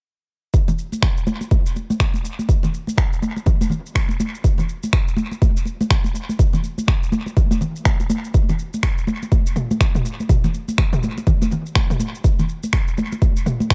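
House groove at 123 BPM in 4/4 with a 60% swing on the sixteenths, a driving, spiritual excerpt cut from a longer piece and built entirely on rhythm. An overdriven electronic kick, deep and up front with a small-room reverb, starts at 0.5 seconds alongside a layered deep house kit of finger snaps, shaker and toms, set back with studio reverb and dub echo. Bright, damped, high-tuned congas enter at 0.7 seconds, close and dry at the source yet trailed by dub echo, adding to an echo-heavy mix.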